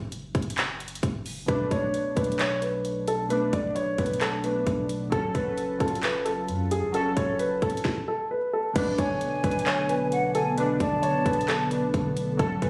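A dark concert grand piano carries the melody up front in this melancholic, menacing trap excerpt, entering at 1.5 seconds with a mellow, vintage tone softened by a low-pass filter and trailed by tape echo. Beneath it, a trap drum kit with a hard-clipped kick, sharp snare, metallic hi-hats, handclaps and crash cymbal sets a half-time feel, while a long sustained 808-style bass hums deep and sine-pure. Warbly lo-fi synth keys, detuned and ring-modulated with chorus, add nostalgic accompaniment over chords moving from Bm7 to F#m. After a stop at 7.8 seconds, a breathy, hollow jazz flute with vibrato joins at 9.0 seconds as a second line, alongside a glassy, ethereal FM pad sitting in the background. The recording has a phone-in-the-room quality, with vinyl crackle, compression and light reverb.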